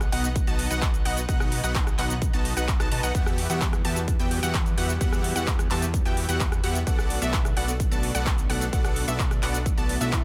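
Festival progressive house at 129 BPM in a powerful, emotional mood, where a punchy, up-front electronic kick enters at 0.4 s beneath a huge, detuned supersaw riff with tape echo and sidechain pumping, a fat, tube-saturated analog bass, a big-room kit of handclaps, metallic hi-hats, rim click and shaker, bright background arpeggios from a gritty 12-bit unison pluck, and a very quiet, airy chorused pad sustaining B, Emadd9 and Bm7 chords, all in a dry mix until a faint electronic swell arrives at 9.8 s.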